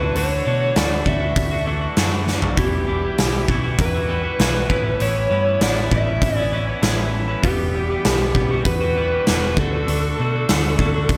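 Angsty and dark, this excerpt of quiet-loud alternative rock moves in a straight 4/4 over mostly add9 chords, with a dark, overdriven lead guitar through a small cranked amp carrying the melody, thickened by slapback echo and digital delay. Beneath it, a bright, twangy, compressed twelve-string electric guitar picks clean arpeggios with its own slapback, while a round, hollow-body short-scale bass holds down the low end. A huge, punchy acoustic drum kit sits up front from 0.2 s, firing a fill at 2.3 s, and a lush hall reverb gives the whole band a big arena sound.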